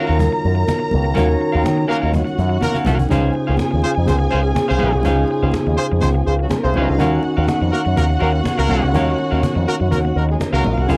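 A picked electric bass run through an envelope filter sits up front, bright and amped, driving this joyful, danceable disco cut at 123 BPM with a straight 4/4 feel, over an Ebm9 chord. Around it, a barky, lightly overdriven tine electric piano with lush chorus and a clean semi-hollow guitar with a warbly pitch drift fill out the accompaniment, while a dark, woody studio string section carries a second line, and a snappy cajon and thin-skinned, high-tuned congas in the background keep time. A tight, clear horn section enters with stabs at 1.9 s, amid a band accent and a drum fill that lead into a new section at 3.1 s, all captured with little reverb in this excerpt from a longer piece.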